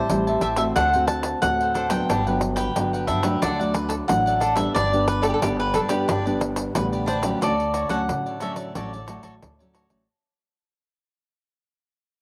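A crisp, picked cavaquinho melody opens this festive, sunny samba-choro excerpt over a bright second cavaquinho and a dark, fingerpicked nylon-string guitar with audible finger squeak, both carrying a cassette-tape tint, joined at once by a woody, growly pizzicato upright bass and a jingly pandeiro played close and dry with hard hands, all bathed in a wet spring reverb with a homemade cassette character before the music fades out from 7.4 seconds as it moves into a new section.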